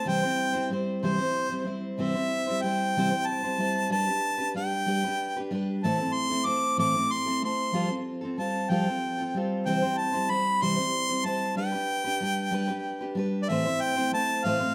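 A clear harmonica carries the melody up front, played in a classical style with a soft attack and light vibrato, ranging from C5 to D6. Beside it, a full-bodied, picked steel-string dreadnought guitar provides the accompaniment, also up front, and both parts play together from 0.0 to 14.7 s. This peaceful, pastoral acoustic folk piece moves at an unhurried 63 BPM in a straight 6/8, in C major and tuned to A4 = 439 Hz. The guitar cycles through C, G, A minor and Fadd9 before returning to C, G and A minor. Close, detailed microphones capture both instruments within a moderate recital hall reverb that lends a gentle sense of space. The passage is cut from a longer piece.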